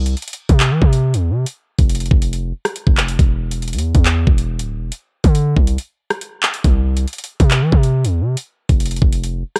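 Dark and ominous, this short cut from a longer drill track sits at 139 BPM in 4/4 with a half-time feel, tuned slightly under standard pitch to A4 = 439 Hz. A hard-hitting 808-style bass carries the low end, a punchy, heavy sine tone with a noise layer, a fast attack and a decaying tail that ranges from D1 up to E3. An electronic drill drum kit drives the groove with a knocking kick, metallic hi-hats, handclaps and rim clicks, all with a produced sound. Both the bass and the drums sit up front in the mix, and a break between 5.8 and 6.6 seconds briefly interrupts the pattern. The sound is dry, with little reverb, and carries the character of a home recording on cassette.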